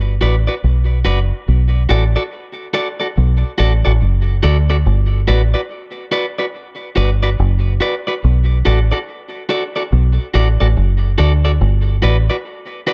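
A deep, round fingered electric bass sits up front in this roots reggae excerpt in B minor, its dark, foam-muted tone punchy and direct from the opening until it stops at 12.3 seconds. A picked electric guitar at the edge of break-up, compressed and slightly gritty with tape echo, joins at 0.2 seconds over a slow 71 BPM swung groove that moves between Gmaj7 and Bm7. The dry, echo-heavy mix gives the piece a hypnotic, meditative feel.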